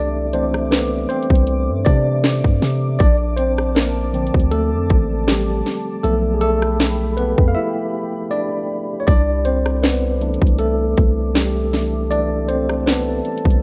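Tender and smooth, this contemporary R&B excerpt moves at 79 BPM in C major with a light sixteenth-note swing, carried by a worn, slightly out-of-tune tine electric piano that plays up front, lightly overdriven as if through built-in speakers, taking a solo throughout with a break from 7.6 to 9.1 seconds. Behind it, a deep, moody pad holds sustained, detuned sawtooth chords with chorus, its own reverb and sidechain pumping, while a long, mellow sine 808-style bass sits up front and a trap drum kit enters at 0.3 seconds with a hard-clipped kick, sharp snare, rim click and metallic hi-hats. The chords move from C6/9 through Bbmaj7 and G7/B back to C6/9 at 9.1 seconds, in a dry, rough home demo mix.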